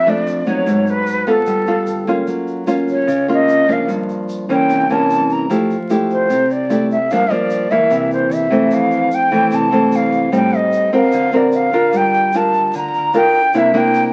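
Relaxed and breezy, this bossa nova fragment puts a breathy, vibrato-laden metal flute melody up front beside a small, fingerpicked nylon-string guitar moving through lush jazz chords, with a very quiet, woody pizzicato upright bass on gut strings and a grainy tube shaker in the background, bathed in moderate large-studio reverb and the crackle of a very old 78 rpm record.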